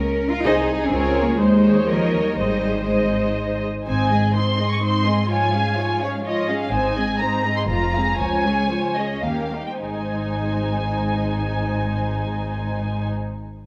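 A muted violin section carries the lively, spirited melody up front in this quick classical-period movement for string orchestra in 3/4, with a second muted violin line, a lush viola accompaniment, a close cello bass and a distant double bass section that drops out between 4.3 and 6.7 seconds, all veiled in a recital-hall reverb as the tempo slows from 6.0 to 9.8 seconds before the final section.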